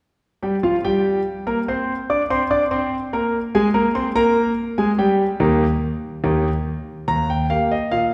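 A lush, reverberant hall surrounds this short excerpt, yet the solo grand piano sits up front with a clear, intimate and natural tone, close enough that the clatter of its action is audible. The music is lively, playful ragtime in 2/4 with a straight feel. The piano plays alone from 0.4 seconds, ranging from deep bass notes up into the bright upper register. Its opening section runs until 7.1 seconds, when a new section begins, only to be cut off at 8.1 seconds.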